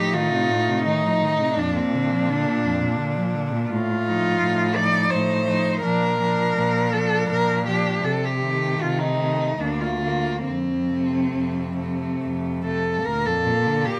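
Warm and lyrical, this short classical excerpt for four bowed cellos moves in a rubato 3/4 at roughly 68-87 BPM in B-flat major, with a rich, focused, vibrato-laden cello carrying the melody up front, a smooth-topped second cello weaving an inner line, a close, even cello supplying accompaniment, and a fourth cello anchoring the bass, all in a moderate studio reverb over 14.0 seconds.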